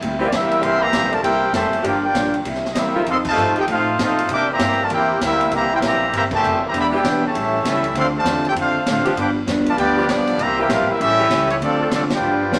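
Big band swing with a joyful, brassy mood, this brief excerpt from a longer piece moves at a brisk, swung pace. The trumpet section carries the melody up front with a smooth top, while the brilliant trombone section plays a second line with light vibrato in the background and the saxophone section holds sustained chords with vibrato behind them. Underneath, a dark, clean hollow-body electric guitar picks the accompaniment, the upright bass plays pizzicato with a woody tone, and the airy, polished drum kit drives with dark cymbals, a medium-tuned snare and a punchy kick. The full band hits accents at 3.2, 6.3 and 12.1 seconds, and a short drum fill closes the passage. The ensemble sits in a wet club reverb.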